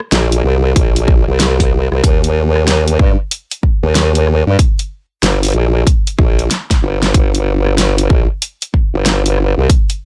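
Swung sixteenths at 94 BPM in 4/4 drive this playful, funky glitch hop excerpt in G minor, where a punchy electronic kick enters at 0.8 s alongside a layered pop kit of warm hats, rim clicks and a fat snare that breaks into a fill at 6.5 s, while an up-front formant-sweep wobble bass, a compressed pulse-and-sine tone thickened with chorus and tube saturation, wobbles between G1 and G2 in a dry, gritty hardware sound.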